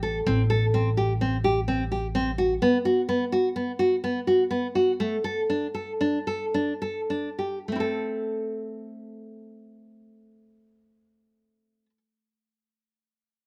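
Closely miked and dry, the recording captures fine detail, as if the players were an arm's length away. This fragment of a longer contemporary chamber piece is urgent yet pensive, set in A dorian with a 5/4 metre and a straight feel, its tempo ranging between 100 and 128 BPM. A dark, full-bodied nylon-string guitar sits up front throughout, fingerpicking arpeggios between A3 and A4 with a deep classical tone. A woody pizzicato upright bass on steel strings anchors the opening on a low A1, then drops out at 2.6 s. The harmony moves from Am7 to B5 and D5, and the pace slows from 3.6 s until the music settles on A minor at 7.7 s, opening a new section that carries the guitar on to the close.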